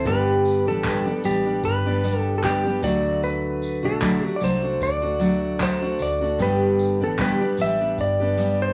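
A clean, dark lap steel guitar sits up front with a compressed slide melody played with fingerpicks, carrying this sunny, easy-going acoustic pop fragment over a gentle swung feel. Beside it, a full-bodied picked dreadnought acoustic guitar picks out the accompaniment through G, then D at 2.8 seconds, and back to G, while a round, foam-muted vintage electric bass holds the low end. A small-room brush kit with a punchy kick, handclaps and tambourine enters at 0.1 seconds, a jingly tambourine hangs in the background, and a large studio reverb and vinyl crackle lend the whole a nostalgic glow.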